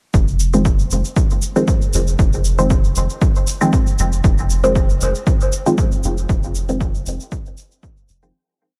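A punchy four-on-the-floor electronic kick drives this short dub techno piece at 117 BPM in 4/4, with a lightly swung, tape-warm shaker and a deep, round sub bass pumping under sidechain from 0.1 seconds, all in F minor over a single Fm7 chord. At 0.5 seconds sparse, muted sawtooth chord stabs enter up front, detuned and dark with a filter pluck, phaser and dub echo, one shape moved in parallel in a digital ambience that gives the groove a nocturnal, deep mood. The kick stops at 7.9 seconds as the piece fades out from 5.6 to 8.3 seconds.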